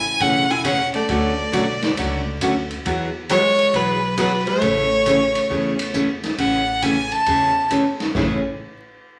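A clear, focused fiddle carries the melody up front with light vibrato in this cheerful western swing excerpt at 136 BPM in A major, cut from a longer piece and swinging over chords that move from Amaj7 through Dmaj7 and Eadd9. A dark, compressed hollow-body jazz guitar plays a second line until 5.9 s, while a bright, full-bodied acoustic guitar picks the accompaniment up front and a woody pizzicato upright bass holds the low end. A distant, roomy big-band drum kit with a punchy kick swings on hi-hat, ride and snare, all set in a wet large studio reverb with vinyl crackle.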